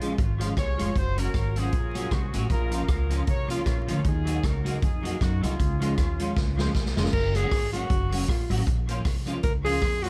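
A swung ska groove at 156 BPM opens with a horn section carrying the melody through dub echo over a clean, hollow-bodied electric guitar with ensemble chorus, a woody pizzicato upright bass and an up-front big-band drum kit with a boomy kick and rolled-off top, moving through Db, Gb, Bbm and Ebm chords. After a drum fill at 6.4 seconds, a breathy, intimate alto saxophone takes a solo from 7.1 seconds, its soft attack and vibrato sitting forward. Light reverb and vinyl crackle frame this energetic, driving excerpt.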